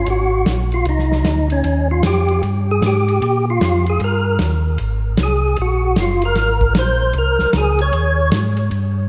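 A dreamy mix soaked in lush hall reverb, with a hint of small room ambience, gives this short cut from a longer soul jazz organ trio a hazy, bluesy glow in a swinging 4/4. Up front, a percussive tonewheel organ carries the melody and solo, its fat, lightly overdriven tone sharpened by third harmonic percussion and key click and colored by chorus vibrato, analog delay and a slow rotary speaker. Beneath it, a second tonewheel organ holds down the bass with a mellow, round, clean sound that also turns through a slow rotary speaker. An acoustic soul drum kit of hi-hat, kick, ride and snare joins at 0.1 seconds, sounding dark and smooth with dark cymbals, a medium-tuned snare, a tight kick and a rolled-off top. The harmony moves through Ab9, Ebadd9 and Eb7, with the lead organ falling away at 8.3 seconds and the bass organ sustaining to the close at 9.1 seconds.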